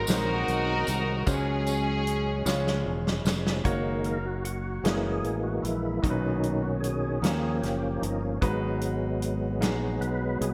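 A floating, bowed string section sings the melody through a digital delay until 2.9 s over intimate grand piano, a lightly overdriven, percussive tonewheel organ spun through a fast rotary speaker, and round fingered electric bass, joined by a punchy, gated country drum kit and a jingly tambourine in the background, before a drum fill hands over to an organ solo from 3.7 s in this jubilant, uplifting slow gospel piece in 6/8, cut from a longer work and given a bright 1980s-style digital sheen with plate reverb.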